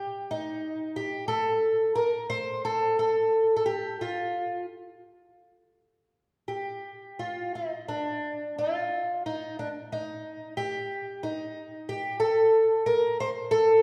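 A fingerpicked twelve-string acoustic guitar carries this short fado passage alone, its octave-doubled strings giving a shimmering, woody voice with the dark character of old strings and a boxy, ladder-braced body. Set in G minor with a tuning reference of A4 = 444 Hz, the playing moves in a rubato 4/4 that hovers around 83-93 BPM, so the pulse breathes rather than holds strictly steady. The guitar sits up front, keeping to a compact range between D4 and C5 across the full 13.8 seconds. A wet recital hall reverb with a 1.8-second decay surrounds it, giving the sense of a church or concert hall. The mood is passionate and longing, a brief glimpse cut from a longer piece.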